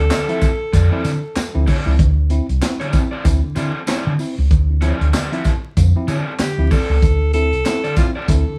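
Funk groove at 95 BPM in D minor, cool and driving, with a 16th-note swing sitting on a single Dm7 chord and vinyl crackle over a band playing live in one room. A round, punchy hollow-body bass and a crunchy, saturated breakbeat kit with a tight kick, high-tuned snare, handclaps and hi-hat sit up front. An overdriven garage guitar fills in the accompaniment and a worn, slightly out-of-tune tine electric piano adds stabs, with a jingly tambourine far in the background. A breathy, whispered alto saxophone floats soft melodic phrases over the top at 0.0 and again from 6.4 seconds in this cut from a longer piece.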